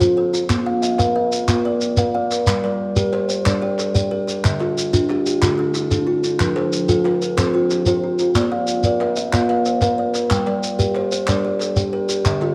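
A moderate echo-chamber reverb gives this excerpt of southern African traditional music a roomy, resonant sound, with a woody, hollow-box kalimba and a grainy shekere sitting up front. Two thumb-plucked kalimbas play arpeggios in an mbira-style interlocking cycle, the second with a ringing, solid-board tone, tuned to an equiheptatonic scale in G at 123 BPM in 12/8. The mellow shekere is joined by human group handclaps, which enter at 0.5 s, over a warm, hypnotic cycle of F, Bb, Gm and Dm.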